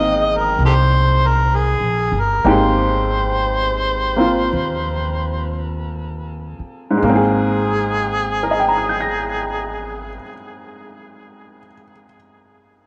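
Romantic and late-night, this swung jazz ballad excerpt slows over its first 7 seconds as a gritty, overdriven harmonica with vibrato, scooped notes and tongue slaps carries the melody up front through tape echo, alongside a thumpy, woody pizzicato upright bass on gut strings and a bright, short-sustained upright piano. Harmonica and bass both stop at 10.2 seconds, leaving the piano to play alone until 12.9 seconds, the whole recording set in wet spring reverb and small room ambience with lossy compression artefacts.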